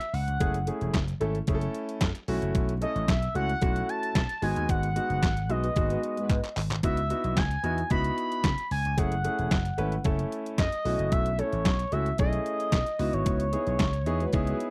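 A straight 4/4 groove at 112 BPM drives this funky, slick slice of early-eighties boogie funk in C# minor, built on a detuned 8-bit drum machine with a thumpy kick, medium-tuned snare, hi-hat and handclaps, overdriven and re-recorded in a small room, alongside a round, punchy vintage slap bass. A smooth, expressive synth lead carries the melody with chorus, vibrato and slapback echo, while a concert grand piano with audible action noise and long sustain comps through F#m7, B9sus4, G#m7 and C#m11, and a dark, mellow synth brass with chorus slips in briefly at 5.6 seconds behind a band accent and drum fill. The dry, close 1970s-style studio sound keeps every part up front except the brass, which sits in the background, and this short passage is cut from a longer piece.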